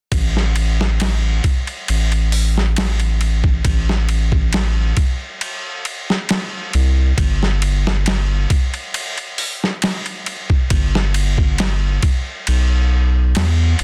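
A round, deep analog bass and a gritty, sampler-style boom bap kit enter together at 0.1 s, setting a smoky, cinematic trip hop mood in a lightly swung 4/4. The bass sits dark and sustained with a fast attack, while the compressed, pitched-down drums bring a thumpy kick, a medium-tuned snare, hi-hat and ride cymbal with a tape-warm grit, both parts placed up front. A digital ambience surrounds this short excerpt from a longer piece, and the master is dense and heavily limited.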